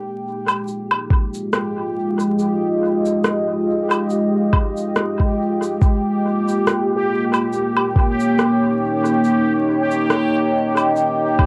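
Deep and meditative, this fragment of a longer ambient dub piece sits on a lightly swung 4/4 groove. A dark, moody pad of detuned sawtooth and sine voices with a sub octave holds sustained chords from the start, moving from Fm9 to Eb7, its slow attack and long release softened by chorus, reverb and a moving notch. Beside it, a bubbling, resonant texture of random filter steps sits lower in the mix, also chorused and reverberant. Electronic cabasa, woodblock and rim click enter at 0.5 seconds with a dub echo and a tape-softened, roomy character, and a compressed, pitched-down, muffled kick thumps in up front from 1.1 seconds. The whole piece has the feel of a home cassette recording in a small room, with vinyl crackle adding a dusty, lo-fi grain.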